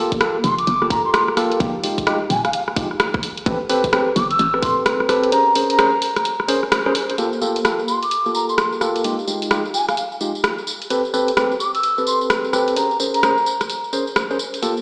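A pure, wooden baroque flute with a straight, tongued tone and lifted highs carries an expressive melody through delay over a late-night, skippy two-step UK garage groove, joined by clean, up-front tine electric piano stabs that gain a filter sweep from 7.2 seconds, a layered garage kit of hi-hat, rim click and tambourine, a tight electronic kick that stops at 4.7 seconds, and a hollow, bouncy, sidechain-pumping FM bass that drops out just after, the mix bathed in plate reverb and a stony, bare-room echo with a small-speaker sound in this fragment of a longer piece.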